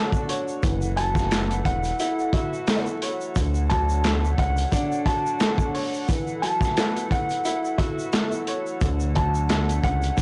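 Boom-bap hip-hop at 88 BPM in F# minor, moody and dark, with a swung sixteenth feel and a crunchy, saturated breakbeat kit of tight kick, snare, hi-hat and handclaps up front, joined by a grainy tube shaker in the background. A mellow, clean electric guitar carries the melody with harmonic tremolo over a worn, woody upright piano with cassette-tape colour and a hollow, airy pad with chorus, all moving between Dmaj7 and F#m7, while a smooth, detuned synth bass enters at 0.6 seconds, drops out at 4.7 and returns at 8.8. The blown-out, overdriven recording carries vinyl crackle, light reverb and a rolled-off top end, and this short excerpt is cut from a longer piece.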